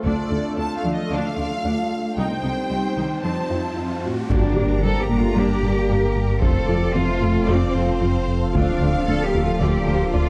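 A straight 4/4 pulse at 113 BPM drives this brooding, relentless G minor cue from a hybrid orchestral and electronic film score, where taiko drums struck with heavy sticks sit in the background under a tight, detuned sequenced-synth arpeggio treated with chorus, phaser and digital delay. Lush bowed strings carry it: a clear, focused violin section holds the vibrato-rich melody over a distant viola section, a cello section supplies the bass, and a bright, evolving pad with chorus sustains chords beneath, while a quiet electronic riser from 1.9 s builds to an impact. At 4.3 s the low end deepens with a gliding, dark synth bass riff, a round sine sub bass and a very quiet double bass section, with mellow French horns and faint trombones joining on sustained chords, a second violin line entering at 5.4 s, and a wet recital-hall reverb framing the dark production.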